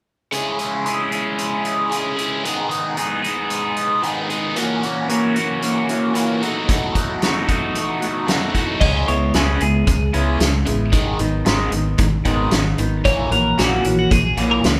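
A bright, overdriven electric guitar with phaser drives this cool, moody indie rock excerpt in C# minor at 113 BPM, playing its riff up front from 0.3 seconds beside a loose, roomy drum kit with a fat snare, punchy kick and dark cymbals. At 4.6 seconds a slightly broken-up, lo-fi guitar through a small old amp adds a second riff, as the chords move from C#m and G#m to F#7/A# and B7sus4. From 8.8 seconds a clean, twangy twelve-string electric guitar, also phased, carries the melody over a fingered electric bass, all set in a recital-hall reverb.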